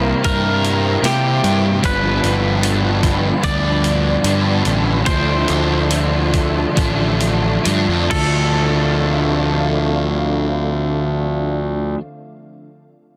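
Melancholic and dreamy, this short shoegaze and dream pop excerpt sets a twangy, spring-reverbed lead guitar melody with slapback echo over a dark, glassy FM pad with chorus and phaser, a scooped overdriven guitar riff up front alongside a hollow-body overdriven guitar riff in the background with reverse reverb, a fuzzy, up-front picked bass, and a crisp 8-bit drum machine with a thumpy kick that plays until 8.3 seconds as the tempo slows and the chords move from C5 to G7 to Dm7.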